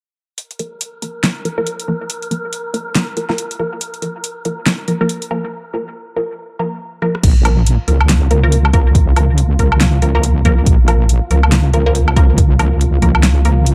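Deep dubstep with a cavernous, meditative mood and a swung half-time feel, opening with an up-front deep house drum kit of fat snare, metallic hats, crash, rim clicks and woodblock, alongside muted, resonant dub chord stabs treated with phaser and dub echo, while an airy, breathy tuned noise texture drifts softly beneath. After a break from 5.5 seconds and a drum fill at 7.0, a heavy, saturated wobble bass with chorus and a deep electronic kick drum arrive at 7.2 seconds, with the bass sitting up front. The production is dark with light reverb, and the clip is cut from a longer piece.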